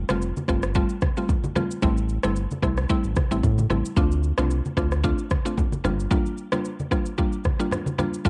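Afrobeats with a smooth, mellow mood, this short cut from a longer piece moves at 112 BPM in 4/4 with a light 16th-note swing, tuned slightly flat of standard pitch at A4 = 437 Hz. A woody, mallet-like synth pluck carries the accompaniment up front, its bright FM tone with a noise layer striking quickly and decaying, coloured by chorus and a cassette tape character. Beneath it, a round analog bass blends sawtooth and sine into a dark, sustained low end that sits forward in the mix until it drops out at 6.1 seconds. A deep house drum kit with a deep kick, rim click and shaker gives an electronic, layered, produced pulse, while low-tuned acoustic congas, played with soft hands, ring close and dry in the background. The harmony drifts through Fadd9, Am7, Dm7 and Gm7 under light reverb, with the hazy feel of a home recording on cassette.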